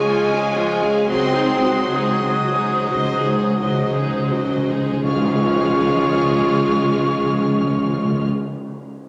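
A slow, rubato 6/8 lilt unfolds in dotted-quarter pulses that ease back over the first 5 seconds, setting a tender, romantic mood for full symphony orchestra in this brief passage cut from a longer movement. A distant, vibrato-rich violin section carries the melody up high, while an airy silver flute, a mellow clarinet set back in the background and a second chamber violin section trace supporting lines alongside it. A lush, close viola section and a mellow, lightly vintage bassoon fill in the accompaniment, and a dark, tight French horn section holds sustained chords that stand among the most prominent voices. Underneath, a very quiet cello section with a smooth top and a lush double bass section on a single low note anchor the bass. Timpani with soft mallets and a round tone enter at 1.1 seconds with a fill as the harmony shifts over a held bass, and at 5.0 seconds the harmony returns home on a full-band accent joined by a very quiet, bright tam-tam. 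The whole orchestra sits in a wet recital-hall reverb that gives the sound a spacious, glowing bloom.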